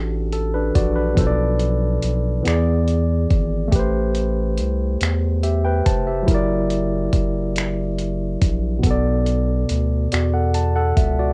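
Barky tine electric piano chords, lightly overdriven through a combo amp, open this late-night, yearning slow R&B excerpt in six-eight, moving from Em11 through Bm7b5 and E7 to Am9, F#7b13 and Bm7 over a round, deep analog bass with a dark, sustained tone. At 0.3 seconds a dusty, sampler-style soul kit comes in up front with finger snaps, hi-hat and a thumpy kick, gritty and compressed, re-recorded in a small room. The piano and drums carry overdrive and a cassette tape effect, and the whole cut sits in light reverb with the faint mains hum of a home cassette recording.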